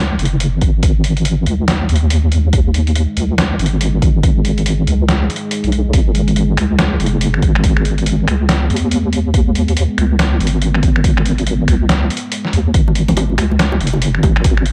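A deep, wobbling square-and-sine bass sits up front through this dark, brooding deep dubstep excerpt in G# minor, holding on a single G#m chord at 141 BPM with a swung, half-time 4/4 feel. A layered electronic kick drum sits beneath muffled, pitched-down, sampler-style finger snaps, hi-hat and snare, while a detuned sawtooth pad with chorus and built-in reverb drifts in the background from 0.4 seconds. Bright, close bongos and congas with dub echo arrive only at 12.9 seconds, all set in a digital ambience.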